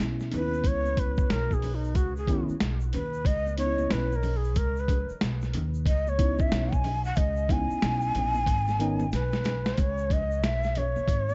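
Jazz-hop with a cool, smoky mood and a swung feel, cut from a longer piece, built on a gritty, pitched-down boom bap kit with a thumpy kick and high-tuned snare, sitting up front beside a woody pizzicato upright bass. A breathy bamboo shakuhachi carries the melody from 0.3 seconds, its vibrato and tongued chiff bathed in tape echo and plate reverb, while a worn, slightly out-of-tune tine electric piano accompanies on a C#m9 chord until 9.1 seconds and a tube shaker and congas ring faintly in the background. A drum fill then leads into a new section at 9.8 seconds, the whole mix wrapped in a dark production.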